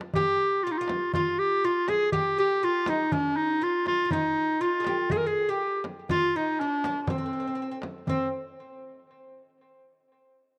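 A moderate plate reverb gives this soulful, hypnotic Arabic maqam ensemble piece, cut from a longer performance, a lingering sense of space. It moves at a straight 121 BPM in 4/4 and is tuned to A4 = 444 Hz. A drum fill opens at 0.0 s on the clay-shelled darbuka, played close with soft hands, and a deep, large frame drum joins at 0.2 s. The bright, classical-style clarinet carries the melody up front as a solo, while the woody, plectrum-plucked fretless oud plays a quieter second line touched with tape echo.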